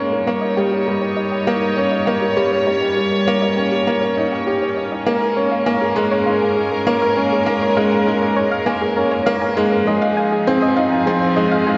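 A woody, clear upright piano riff with tape echo leads this moving, intimate piano-and-strings electronica fragment in Bb dorian at 100 BPM, set over sustained chords from a rich chamber string section with light vibrato and gut-string tone, while a soft, round pluck with chorus and tape echo plays dark arpeggios in the background under a filter sweep, as the full 11.8 seconds builds through Eb7, Bbm7 and Fm7 in a dreamy mix soaked in plate reverb.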